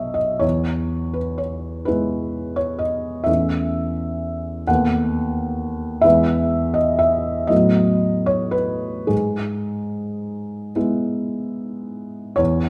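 Romantic classical nocturne in E major for solo felt-muted upright piano, dreamy and serene, drifting in rubato at a slow 35-45 BPM in 12/8, its soft, mellow tone sitting up front and intimate with audible action noise inside a moderate recital-hall reverb, as gentle harmonies move from E through A/E, B7/D# and B7/A before settling on E/G# in this short extract from a longer piece.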